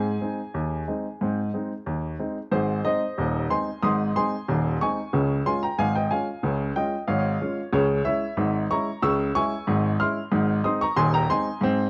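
A home recording on cassette gives this short clip a homespun, intimate character, with light reverb around a single upright piano. The piano sounds woody and sits up front, and it plays solo for the entire 11.9 seconds, reaching from a deep Eb1 up to F6. This is lively, playful ragtime in a straight 2/4, lifted from a longer piece. The passage presents one section and then repeats it from 2.5 seconds. The harmony moves from Ab to Db, darkens briefly to Db minor at 7.7 seconds, and settles back on Ab at 10.3 seconds.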